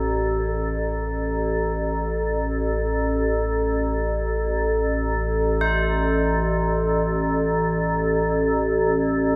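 An icy glass pad sits up front, holding a low A1 drone with a crystalline, airy tone built from layered sine, triangle and noise, shaped by wave-folding and ring modulation. Its slow attack and long release let each tone hang, while chorus and its own built-in reverb add depth. Tubular bells ring in the background between A4 and C5, their solemn, metallic voice struck with a plastic hammer and captured close and dry. This is meditative world music in free time and A minor, tuned to A4 = 439 Hz, with a haunting, spacious mood. Both parts sound across the full 9.4 seconds of this short cut from a longer piece, set in a wet echo chamber with a 1.5-second decay.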